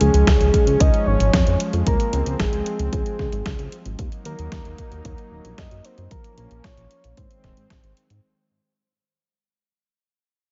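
A straight 4/4 pulse at 113 BPM drives this playful, sunny italo disco clip in Db major: a punchy, tape-tinged electronic kick enters at 0.3 s beneath an overdriven 12-bit drum machine's hi-hat and medium-tuned snare, while a glossy, up-front synth bass, built from pulse and sawtooth waves with filter pluck and tube saturation, carries the low end. A smooth, detuned analog pad holds chorused chords through Db, Ebm, Bbm and Ab, and a soft, round, octave-layered lead sings a dark, vibrato-tinged melody with chorus and delay. The mix is dry and mellow up top, and the whole 8.2-second cut, taken from a longer piece, sits inside a fade-out.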